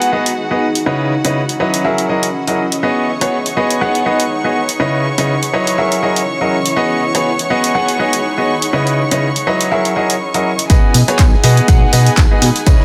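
A lightly swung groove of handclaps, hi-hat and rim click from a punchy analog drum machine drives this joyful, feel-good piano house fragment, with a clear, up-front baby grand piano riff with delay over a cycle of B6, C#m9 and F#13 chords. Bowed chamber violins hold soft, sul tasto chords beneath a low-pass filter, and a cloudy, blurred granular pad drifts in the background with its own reverb, both breathing with sidechain pumping like the piano. At the drop at 10.7 seconds, a layered, tape-warm electronic kick arrives up front alongside a fat, detuned sawtooth bass, while a very quiet acoustic soul kit with snare, hi-hat and tambourine adds depth in a lush hall.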